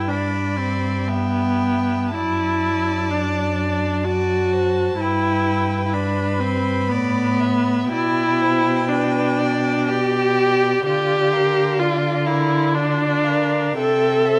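The viola sits up front with a focused, smooth-topped tone and vibrato, carrying the accompaniment through the whole 14.4-second span of this slow, romantic string quartet movement in G major. Above it, the first violin sings a tender, lyrical melody between D5 and B5 in a dark, intimate sul tasto voice with light vibrato and a soft attack. The second violin adds an even, rich second line from farther back. The cello anchors the bass with warm, expressive vibrato and portamento. At 62 BPM in 3/4, the beats are uneven and pushed by rubato, and the harmony moves from G through D/F# and G/B to a Bb/D before reaching C near the close. Tuned to A4 = 441 Hz, the four players sound in a moderate recital hall reverb of 1.6 seconds, and the passage is cut from a longer piece.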